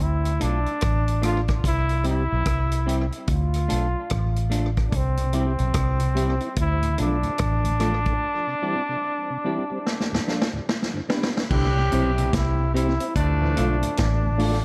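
Warm and uplifting, this roots reggae excerpt moves at 73 BPM in C major with a swung sixteenth feel, led by a brilliant solo trombone with light vibrato and a soft attack, carried on tape echo over a dark, round, foam-muted fingered bass and a punchy vintage drum kit with dark cymbals and a rolled-off top. A clean semi-hollow guitar with subtle chorus sits in the background, joined at 5.2 seconds by a mellow tonewheel organ through a slow rotary speaker, and a break with a drum fill leads into a new section at 11.5 seconds. There a clear trombone section adds a second line while a very quiet, stringy overdriven clav plays arpeggios, all within an echo-heavy mix with light reverb.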